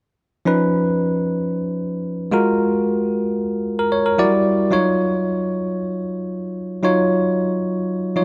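A bell-like tine electric piano opens at 0.5 s, playing bright, clean chords up front that move through C#9, F#maj9 and Em9 in a relaxed, soulful amapiano groove at 113 BPM. A moderate plate reverb surrounds the sound, and the worn cassette tape character adds a warbly pitch drift. The electric piano carries this short cut from a longer piece alone, ending at 8.2 s.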